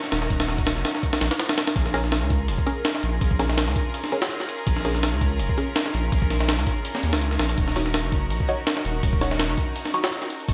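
Raw and nostalgic, this excerpt from a longer drum and bass and jungle piece moves at 165 BPM in 4/4, with a light 16th-note swing. A sampler-style breakbeat kit sits up front, compressed, pitched up and gritty, with a thumpy kick, a high-tuned snare and hi-hat carrying the roomy character of a large space. A deep, thick sine sub bass, fast in attack and tube-saturated, sustains beneath it from the opening moments. Floating above, a studio string ensemble bows soft-attack chords played sul tasto, their tone pure and warm. From 1.9 seconds a muted, mellow dub chord stab joins in the background, a detuned sawtooth and square blend with a sub octave and a plucky filter, colored by phaser and dub echo. The harmony moves from Ebm7 to Bbm7 at 1.8 seconds and returns to Ebm7 at 7.6, all set in light reverb and digital ambience.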